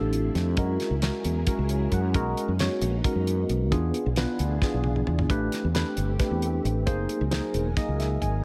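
Slick and intense, this electric jazz fusion passage, cut from a longer piece, moves in a straight 7/8 through rich chords like Dm9, Bmaj9, E7b9 and Am11. Up front, a clean tine electric piano with phaser plays the accompaniment and adds short fills at 1.5 and 7.8 seconds, while a round, punchy fretless electric bass holds the low end and a silky, vintage string machine with ensemble chorus lays soft sustained chords underneath. A dry, damped 70s drum kit with a fat snare and tight kick drives the groove, breaking into a fill at 4.6 seconds, all set in light small-room ambience.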